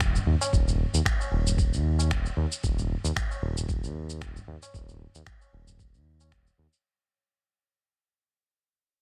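Organic downtempo at 114 BPM in 4/4, with a light 16th-note swing and a meditative, earthy mood, heard in a short excerpt that fades out across its whole length of about 6.8 seconds. Up front, a smooth sawtooth-and-triangle synth bass sits between Eb1 and Eb2, its fast attack and sustained notes given a pumping sidechain movement. Electronic kick drum and electronic finger snaps with cabasa have a sampler-style, compressed, gritty character with tape coloring, re-recorded in a large room, the kick landing thumpy and the snare softly clipped. A low-tuned acoustic tabla rings in the background from a small room, entering at 0.1 seconds. The whole is set in digital ambience and carries a dense, heavily limited modern master.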